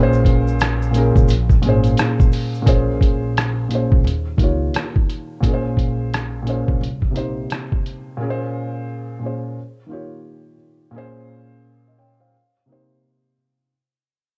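A felt-muted upright piano sits up front in this nostalgic, melancholic lo-fi hip hop excerpt, its soft, mellow tone carrying audible action noise and a cassette tape character as it plays accompaniment in Bb dorian. The tempo is 87 BPM in 4/4 with a swung sixteenth feel, and the chords cycle through Bbm9, Eb9 and Cm7. A compressed, pitched-down sampler-style drum kit, also up front, supplies a thumpy kick, hi-hat and rim click with a muffled, tape-warm sound, while a woody pizzicato upright bass with steel strings holds the low end. A grainy, bright egg shaker sits in the background, heard only briefly near the start. The drums stop at 8.1 s, leaving the piano alone until 13.7 s as the passage fades out from 2.7 s, all set in a dark, small-room ambience.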